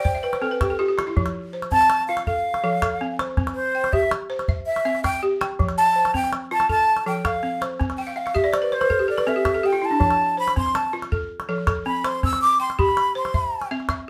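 A breathy jazz flute carries the melody up front, its metal tone soft in attack with vibrato, lifted highs and an unsteady line that ranges from C5 up to E6, taking a solo from 1.2 seconds onward. This is a joyful West African traditional piece for strings and xylophone, moving at 108 BPM in a straight 12/8 in F lydian. A woody, dry balafon struck with hard rubber mallets supplies buzzing arpeggios between F3 and G5, opening with a fill before the flute solo and adding another fill from 8.0 to 10.0 seconds. A small, close calabash keeps the percussion going throughout. The harmony simply alternates between F and C, and the band sounds as if playing live together in one room with a wet but short ambience. This excerpt is cut from a longer piece.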